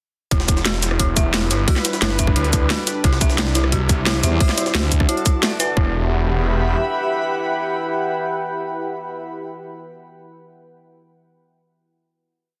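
A dark, aggressive drum and bass piece opens at 0.3 s with a tight, overdriven electronic kick, a cracking snare and bright hats from an up-front kit, a gritty, pitched-up jungle breakbeat looped in the background, and a snarling, distorted saw bass chopping out bright, resonant phrases. Above them an eerie, inharmonic synth bell repeats a six-step arpeggio that drifts against the bar, while a deep, moody pad and an airy, breathy pad fade in with chorus and sidechain pumping over a chord cycle in E minor. A thick, growling FM bass bursts in briefly around 4.2 s, and after the drums stop the two pads carry a final held chord to the close at 9.3 s.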